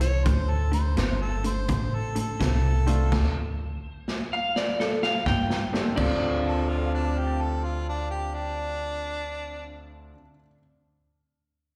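A swung 84 BPM shuffle in 4/4 drives this soulful, smoky electric blues fragment in D minor. A gritty, boomy garage drum kit and a thumpy, woody upright bass sit up front under a slightly broken-up electric guitar riff from a small old amp. The drums play a fill from 3.1 seconds and drop out at 6.2 seconds. Above them, a clean, fingerpicked lap steel slide carries the melody, while a close-miked harmonica with light vibrato and overdrive plays a second line. A brilliant upright piano enters in the background at 2.9 seconds, and slapback echo colours the steel, harmonica, guitar and piano, all heard as a live gig through the venue's PA with recital-hall reverb.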